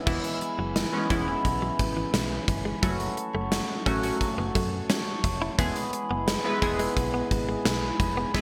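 A punchy gated 80s drum kit with bright cymbals, a medium-tuned snare and gated reverb drives this nostalgic, glossy 1980s-style pop excerpt at 87 BPM in straight 4/4, alongside up-front chorused synth keys with pulse-width and sawtooth tones and a filter sweep, a snappy metallic FM slap bass, ethereal glassy glass harmonica chords, and a very quiet clean, direct-recorded electric guitar riff, all moving through E, F#m and back to E under a moderate plate reverb in a polished digital production.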